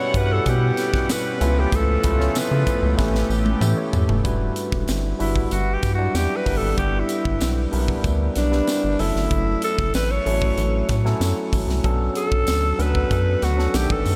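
A straight 4/4 groove at 95 BPM drives this slick, nocturnal slice of polished 1980s jazz-funk pop in E dorian, where a rubbery, up-front square bass and a crisp fusion drum kit with a high-tuned snare and tight kick support a barky, overdriven tine electric piano through analog chorus, soft bowed chamber strings float distantly until 4.2 s, a jingly tambourine sits in the background, and a breathy, raspy alto saxophone with delay takes a solo from 4.3 s after a drum fill, the mix soaked in a huge, dreamy reverb.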